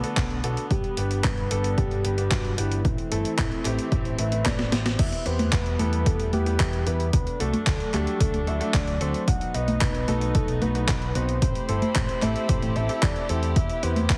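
A gated 80s digital drum machine opens this melodramatic, bittersweet italo disco excerpt in E minor at 112 BPM, its congas, handclaps, hi-hat, crash and gated-reverb snare carrying a tape-warm, small-room character, and it is soon joined by a punchy electronic kick drum and a dark, round picked electric bass with an envelope filter, with a drum fill at 4.5 seconds. Over them a soft, detuned octave-layered synth lead carries the melody through chorus and delay, while a concert grand piano with deep bass adds stabs and a reedy, gut-string chamber string section holds sustained chords in the background. The chords move from Bm7 through G and Am before settling into Em, D, B and Am7, and the whole mix has a heavily compressed radio sound with light reverb.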